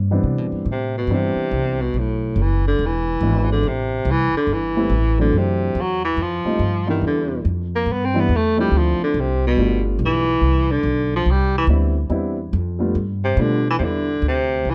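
Playful and swinging, this short excerpt of small-group jazz moves at 142 BPM in C major, with a woody, thumpy pizzicato upright bass up front and a dark grand piano comping in short, natural strokes. A mellow baritone saxophone carries the melody as a solo from 0.3 seconds, its vintage subtone colored by vibrato and scooped notes over changes that turn from Cmaj7 through a cycle of minor sevenths and dominants back home. Light reverb frames the dark, warm production.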